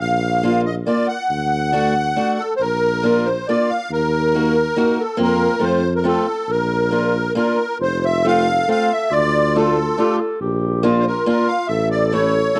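A reedy, shimmering musette accordion carries the melody up front in this jolly, bouncy alpine folk dance in 3/4 with a rubato feel, over a boxy fingerpicked archtop guitar with audible finger squeak, a mellow tuba bass with light vibrato, and a smooth classical clarinet that adds a second line from 7.8 seconds, with the accordion, guitar and clarinet carrying the soft grain of a cassette home recording.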